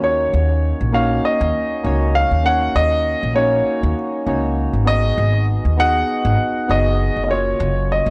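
A dry, gritty studio sound frames this short sunset chillout piece, cut from a longer work, in Eb minor at 99 BPM with a light swing on the 16ths. A dark baby grand piano carries the melody between Db5 and Gb5, its mellow tone ringing with long sustain and touched by tape echo. Beneath it, soft electric-piano-like synth keys supply the accompaniment with a round, gentle timbre built from triangle and sine waves, wave-folded and shaped by a filter sweep, their fast attack decaying under chorus and tape echo. A pizzicato upright bass with steel strings sits up front, woody and thumpy, holding down the low end. The harmony moves from Ebm7 to Abm7 at 4.9 seconds and reaches Gbmaj7 at 7.3 seconds, underscoring the relaxed, wistful mood.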